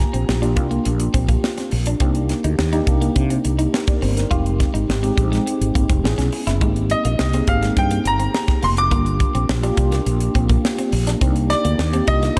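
A tight funk drum kit with a high-tuned snare, a round, punchy fretless bass, a mellow tine electric piano with analog chorus and a lightly chorused clean guitar riff set in the background open this bittersweet, slick excerpt of polished 1980s jazz-funk pop over lush seventh and ninth chords, while a clear baby grand piano with slapback echo plays a brief melodic phrase at the start and returns at 6.9 seconds to carry the melody up front in a small, lightly reverberant room.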